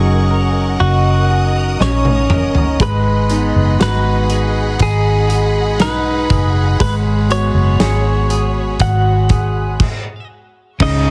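A straight 4/4 pulse at 60 BPM carries this tender, heartfelt pop ballad excerpt, with a loose indie drum kit entering through a fill at 1.8 s and pausing in a stop at 9.8 s, while a dark, foam-muted vintage fingered bass sits up front beneath F#6, G#m7 and C#7sus4 chords. A clean, direct-recorded electric guitar picks the melody over an intimate concert grand piano whose action noise and long sustain are audible. Bowed studio strings hold lush, vibrato-rich chords above, and a twelve-string electric guitar adds chorus-soaked arpeggios in the background, all within light reverb and a heavily compressed, radio-like sound.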